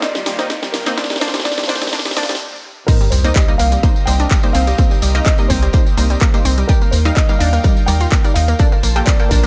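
Emotional and dreamy, this progressive house excerpt at 126 BPM in C dorian opens with a build-up: a dark, boxy grand piano melody with tape echo, a lush, airy supersaw pad, round, nasal analog pluck arpeggios under a filter sweep, detuned unison pluck stabs, a punchy kick drum, a house kit with cracking snare and hats, and a background riser and sub drop all gather toward a brief break at 2.4 seconds. The drop lands at 2.9 seconds with an impact as a jingly tambourine and a barely audible acoustic jazz kit join, and from 3.1 seconds a thick, saturated sub bass adds weight beneath the sidechain-pumped synths over Cm7, Ebmaj7 and Bbmaj7 chords.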